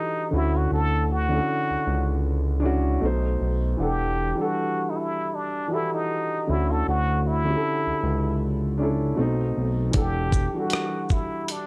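Light reverb and a low-pass haze give this nostalgic, reflective lo-fi hip hop excerpt a soft, muffled glow. At 78 BPM in 4/4 with a gentle 16th-note swing in E dorian, a breathy trumpet with a plunger mute carries the solo melody up front, its whispered, wah-wah tone, scooped notes and light vibrato sounding close and intimate in a jazz style. Beside it, a dark upright piano plays mellow, woody accompaniment with long sustain, moving through Dmaj9, B7b9 and Em11. A smooth synth bass enters at 0.3 seconds with an evolving sawtooth and square-wave tone, fast attack and vibrato, holding sustained low notes until 10.5 seconds. A dusty, sampler-style drum kit arrives only at 9.9 seconds, its compressed, gritty hi-hat, thumpy kick, rim click and shaker re-recorded in a large room.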